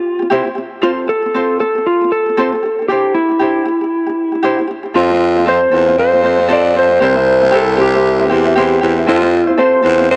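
Sunny and carefree, this acoustic pop excerpt moves in an easy 4/4 with a gentle swing on the sixteenth notes. A fingerpicked ukulele sets a light accompaniment from the start. Over it, a dark, slightly broken-up electric slide guitar, played with fingerpicks and compressed, carries the melody up front. At 5.0 s a raspy, gritty baritone saxophone with a punchy attack and smooth top joins on the bass line, its tone thickened by transformer saturation. The harmony moves between C, F and Cadd9. A moderate plate reverb and the warbling pitch drift of worn old cassette tape give the whole mix a worn, warbly character.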